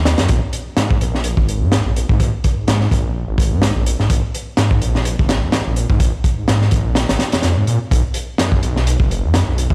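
A crunchy breakbeat drum kit sits up front, its saturated, gritty hits with a high-tuned snare, tight kick and hi-hat carrying a rolled-off, dark top over a swung 126 BPM groove in 4/4. Beneath it, a thick, menacing detuned saw bass with a beating, sustained tone holds down the low end from the first moment, entering at 0.0 s just ahead of the drums at 0.1 s. This funky, energetic breaks cut from a longer piece sounds as if played through a big sound system in a bare stone room.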